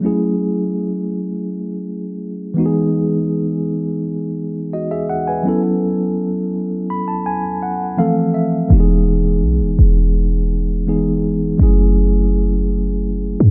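A straight 4/4 pulse at 83 BPM carries this smooth, romantic contemporary R&B excerpt in E major, cut from a longer piece. A mellow tine electric piano plays accompaniment from the start, heard up front with a clean tone that seems to come through built-in speakers, and it moves through F#m9, Emaj7 and A69 before a brief Fmaj7. Between 6.5 and 8.7 seconds the electric piano plays a fill, and at 8.7 seconds a clean 808-style bass enters beneath it as the chords return to Emaj7 and then F#m9. The bass is deep and boomy, a sine tone with a fast attack that decays, sitting low and up front. Light reverb and a dark production give the short passage an intimate, late-night glow.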